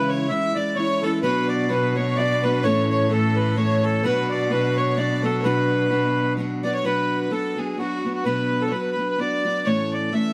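Heard up close in a moderate recital hall, this spirited, dark and lively Celtic waltz in B dorian moves at 128 BPM in a swung 3/4, cut from a longer piece. A reedy, airy accordion carries the melody up front over a bright, fingerpicked steel-string guitar with fresh strings and audible finger squeak, while a clear, focused bowed fiddle with light vibrato sits in the background. A very quiet bamboo bansuri with a soft attack and straight tone adds a second line until 6.3 seconds, and an intense bowed cello anchors the bass up front from 1.2 to 6.8 seconds.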